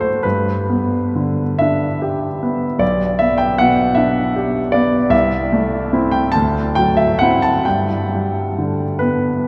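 A grand piano opens on a G major chord, its tone smooth and vintage, placed up front. This is a serene, dreamy romantic nocturne in G major and 6/8, moving slowly at about 42-53 beats per minute in dotted quarters with a free, rubato feel. The solo piano spans from B1 up to A5, drifting through G, G/B, Am/C and a D9 before settling back on G at 7.6 seconds. A vast, echoing cathedral space surrounds the instrument, its long reverb lingering for several seconds after each chord. At only 9.5 seconds, this brief passage is cut from a longer piece and offers an unhurried moment of reflection.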